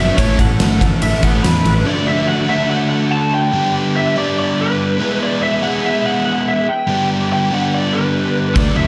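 Classic rock at 143 BPM with a swaggering, driving feel, where a dark, lo-fi lead guitar with overdrive and slapback echo carries the melody over an up-front crunchy guitar riff and a very quiet, gritty tonewheel organ holding sustained chords through a slow rotary speaker, while a second picked guitar, a bright, growly fingered bass and a huge arena drum kit with a fat snare, punchy kick and bright cymbals drop out near 1.9 seconds and return around 8.6 seconds, all in a big arena sound with moderate stage reverb as chords move from Aadd9 through D, G and E/G#.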